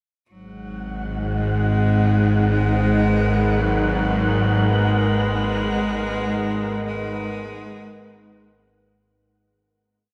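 A lone bowed cello fades in at 0.3 s with a bright, intense tone, light vibrato and a smooth top, playing a free, narrow melody through delay in this ominous dark ambient drone piece in G# minor at 54 BPM. Beneath it, a tense, string-like drone sits up front in the low register, joined by an airy, breathy, wind-like texture holding a high note. From 2.6 s, a deep, moody pad of detuned, wave-folded, slowly shifting chords with chorus rises around a G#madd9 harmony, and the mix, steeped in a huge, wet reverb, fades out from 4.7 s.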